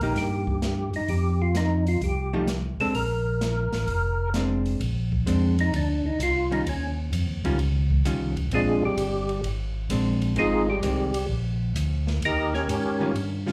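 Greasy and bluesy, this soul jazz organ trio swings in 4/4, heard as a live club gig through the venue's PA with a light room reverb. A percussive tonewheel organ carries the melody up front, its fat, clean tone marked by key click, third harmonic percussion, chorus vibrato, a slow rotary speaker and a slapback echo, and a tonewheel organ solo begins at 4.8 seconds. Beneath it, a second tonewheel organ supplies the bass line through its own slow rotary speaker. A dark, hollow-body archtop guitar, miked and amplified, adds picked accompaniment with a touch of slapback echo. An acoustic jazz drum kit sits further back, with dark ride and hi-hat cymbals, a medium-tuned snare and a boomy kick. The harmony moves through rich extended chords, opening on a rootless Cm7, and this short cut from a longer piece ends at 13.5 seconds.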